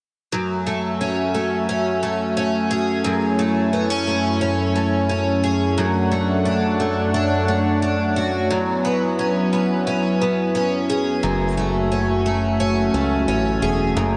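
Hazy and haunting, this dream pop passage cut from a longer piece opens on a smooth, detuned sawtooth pad holding slow-blooming chords, while a picked twelve-string acoustic guitar spins shimmering, octave-doubled arpeggios through lush chorus and tape echo. Both sit up front in a huge ambient reverb, and finger squeaks surface from the strings. At 11.2 s a fat, thick analog bass enters with a fast, decaying attack and a filter sweep, warming the low end as the chords return to F#m9.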